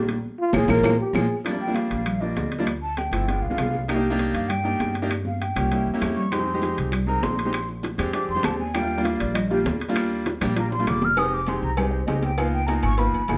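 A brisk, straight 4/4 pulse at 198 BPM drives this sunny, danceable Afro-Cuban jazz excerpt in Eb major, cut from a longer piece and tuned slightly below standard pitch. Bright, high-tuned congas sit in the background alongside ringing, dry timbales and agogo bells, woody claves from 0.5 seconds, and round, low-tuned bongos and cowbell that drop out briefly before returning at 6.3 seconds, with drum fills marking the turns. Underneath, a dark, thumpy pizzicato upright bass with gut strings stands up front next to a clear, smooth grand piano carrying the chords, which move through rich extended harmonies such as Dm9, G7b9 and Bb13. A mellow, jazz-style trombone with light vibrato opens with a short solo over a band accent, then gives way at 1.6 seconds to a breathy, hollow silver concert flute that carries a soft-attack, close-miked solo through to the end. Light reverb adds a touch of space around the ensemble.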